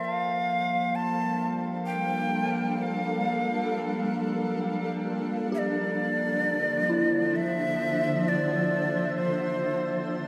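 Free-time ambient music, serene and warm, tuned to A4 = 445 Hz, drifting from Gm7 to Dm7 at 5.5 seconds in a short excerpt cut from a longer piece. A breathy, bright bamboo shakuhachi sits up front with close-miked vibrato and a crisp, chiffy attack, its melody trailed by tape echo, while a shimmering, ethereal pad fades in across the full 10.3 seconds with octave-up granular shimmer, chorus and its own reverb. A detuned sawtooth analog drone evolves underneath with pulse-width modulation and chorus, and a soft, pure FM synth bell plays decaying arpeggios in the background through chorus, phaser and tape echo, all set in an echo-heavy chamber reverb.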